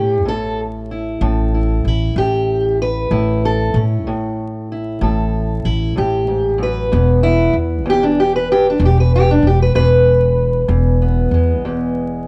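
A fingerpicked steel-string parlour guitar with a dark, boxy tone takes the melody as a solo up front, beside a woody pizzicato upright bass, in this laid-back, soulful acoustic country blues fragment in a straight 12/8 that moves from A to E5 at 6.9 seconds, captured as a dry, close 1970s-style studio recording with small-room ambience and vinyl crackle.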